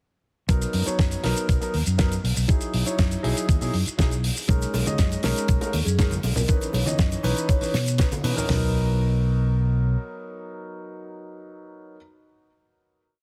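A four-on-the-floor kick from a clean, thumpy 12-bit drum machine with a fat snare drives this groovy, feel-good nu-disco piece at 120 BPM in B major, layered with a dry, damped 70s kit playing a disco backbeat on shaker and hats, while a punchy, amped fingered electric bass pushes a funky syncopated line up front. A dark, intimate concert grand piano with audible action noise and analog delay plays dotted-rhythm chords from 0.5 seconds, bright tube shaker, bongos and congas join distantly in a large room at 4.5 seconds, and a ringing vibraphone with soft mallets, slow motor vibrato and tape echo adds short answering phrases in the background. The whole piece is a single drop that gives way at 8.5 seconds to a final Bmaj7 chord, all wrapped in a heavily compressed, radio-like sound.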